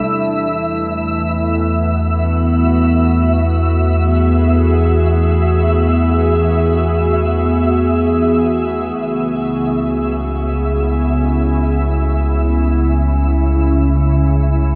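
Peaceful and warm, this ambient excerpt floats on a glassy, ethereal FM pad with ensemble chorus sitting up front beside a deep, round sine sub bass, while a nasal, evolving analog drone with pulse-width modulation hums in the background and a twinkling granular texture adds sparkling octave-up shimmer, set in a huge reverb as the harmony moves from E to C#m7 at 9.0 seconds.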